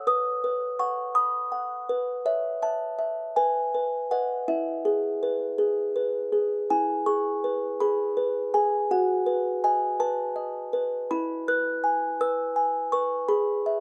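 In a 6/8 at 55 BPM counted in dotted quarters, this dreamy, innocent classical lullaby in E major, tuned slightly low at A4 = 437 Hz and cut from a longer piece, features a solo music box with a delicate, tinkling, plucked tone from a large box, mid-forward and up front in light reverb, ranging from E4 to F#6 as it plays the same section twice across 13.8 seconds, with the second pass beginning at 6.7 seconds and settling on E over G# at 13.3 seconds.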